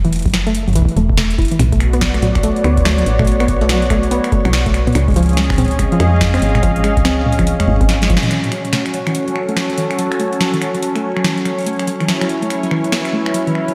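Bathed in a concert-hall reverb with a big arena sound, this cerebral, melancholic swung IDM excerpt sets a lo-fi, warbling pluck's chorused, echoing arpeggios over a round, woody FM bass, a deep electronic kick and a tape-warm analog drum machine of finger snaps, metallic hats, crisp snare and toms. A detuned, vintage pad joins with sustained chords at 1.6 seconds, and a drum fill and band accent close out the bass and kick at 8.2 seconds before a bright, bubbling stepped-filter texture enters in the background at 8.3 seconds as the pluck's filter sweeps.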